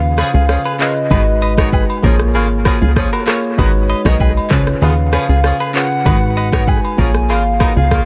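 Mellow and hypnotic, this afrobeats excerpt moves at 97 BPM in G# dorian. A hollow, woody clarinet-like synth lead with chorus and vibrato carries the melody over a tine electric piano and a punchy, plucky analog bass sitting up front. From 0.2 seconds an electronic afro-pop kit of deep kick, smooth hats, handclaps, rim click and shaker comes in, a distant, roomy horn section adds a second line, a bright, twangy direct-recorded clean guitar plays a riff in the background, and agogo bells and woodblock join in. It is all in a mix with little reverb that leans heavily on analog delay for the lead, piano, horns, guitar and bells.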